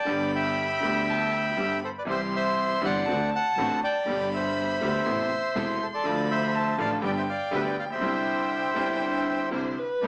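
A reedy, airy bandoneon sits up front with the melody in this nostalgic yet playful tango fragment, cut from a longer piece and moving with a rubato feel until it drops out at 9.5 s. A smooth, bowed violin with vibrato traces a second line above a brilliant, slightly worn concert grand piano with deep bass, while a distant, lush symphonic string section adds very quiet stabs and a single bowed double bass floats underneath, pure and soft in attack, played sul tasto. The whole is set in a moderate large studio reverb with a small-speaker sound.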